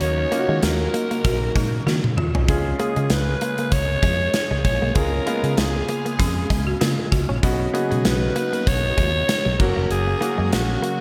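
Uplifting and nostalgic, this short excerpt from a longer 1980s-style pop piece moves at 97 BPM in 4/4 with a light sixteenth-note swing, its harmony passing from D#m7 through C# and Badd9 to F#. A raspy, gritty alto saxophone carries the melody up front with vibrato and a touch of delay, while a clear concert grand piano with deep bass and slapback echo supplies the accompaniment. A gated 80s drum kit with a punchy kick, bright cymbals, tambourine and toms drives the track, adding a fill at 1.9 seconds, and a dark, round, foam-muted fingered electric bass holds the low end until 10.8 seconds. In the background, a swirling string machine warbles through ensemble chorus and phaser on sustained chords, and a direct-recorded clean electric guitar picks a compressed riff with chorus and delay. A woody, dry marimba played with hard mallets adds a rustic second line from 1.2 to 7.6 seconds, all set in a concert hall reverb that gives the mix a big arena sound.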